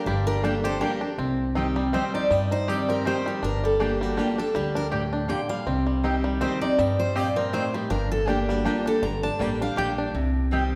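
A bright, full-bodied picked steel-string guitar carries the melody up front in this lonesome, driving bluegrass waltz with a swung feel, while a clear, intense fiddle with light vibrato sounds in the background only until 1.1 seconds, a second picked guitar adds warm accompaniment, a twangy, percussive banjo played with fingerpicks spins out arpeggios, a woody, dark upright bass holds the low end, and a round, double-strung mandolin adds stabs, all in a short cut from a longer piece set in the lush reverb of a church or concert hall.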